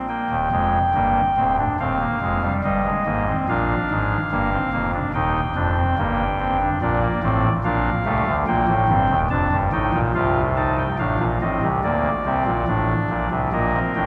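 Classical baroque-style four-part fugue, heard in a solemn, contemplative fragment cut from a longer piece, played by a solo chamber organ on a soft reed oboe stop from 0.0 to 14.1 s. The reedy voicing sits up front with a touch of chiff, spanning deep bass notes to a bright upper line, while long cathedral reverb blooms around it in a church or concert hall. The harmony moves through Eb, Bb7, Cm7 and F7/C before settling back toward Cm7 at the close.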